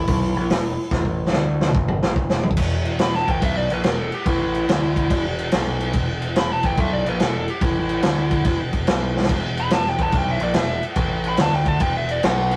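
A dark, smooth overdriven lead guitar solos from 3.0 s over a smoky, gritty blues rock and southern rock groove in E minor at 143 BPM with a swung feel, after an overdriven slide guitar briefly opens the cut for its first second, while a growling, bright picked electric bass with overdrive anchors the low end and an up-front vintage drum kit with a punchy kick and rolled-off top pushes through fills, including one at 9.1 s, all captured in a rough rehearsal-room recording with light reverb.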